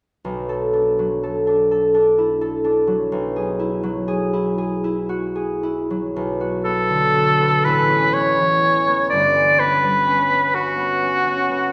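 Wistful and hazy, this short passage from a longer impressionist classical piece for oboe and harp unfolds in a lilting 6/8 with a free, rubato feel. The concert harp opens alone at 0.2 seconds, its fingerpicked, ringing tones sitting up front and spanning a deep low register up into the middle of the range as it moves from Bm7 to Eadd9/B. At 6.6 seconds the oboe enters as the soloist, carrying the melody with a clear, classical voice, light vibrato and a smooth top, sitting up front alongside the acoustic harp. Beneath it the harmony drifts through Bm7, Aadd9 and a dreamy Gmaj7#11, giving the closing phrase a suspended, floating colour. The pair is heard in a resonant recital hall or church, whose lush reverb wraps both instruments in a soft glow.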